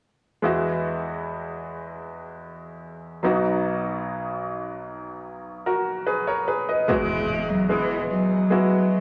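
A bright, brilliant grand piano opens the piece at 0.4 s. It plays polished, short-sustained accompaniment up front, moving from Eadd9 to B. This is a heartfelt, emotional pop piece at a slow 74 BPM in straight 4/4, cut from a longer work and tuned slightly sharp to A4 = 445 Hz. At 6.9 s the harmony returns to Eadd9, and a single bowed cello takes up the melody in a narrow register with a clear, smooth, even tone and vibrato. At the same moment, a soft electronic impact sits in the background. Moderate plate reverb gives the sound a lingering space, and the worn, warbling quality of old cassette tape adds a gentle pitch drift.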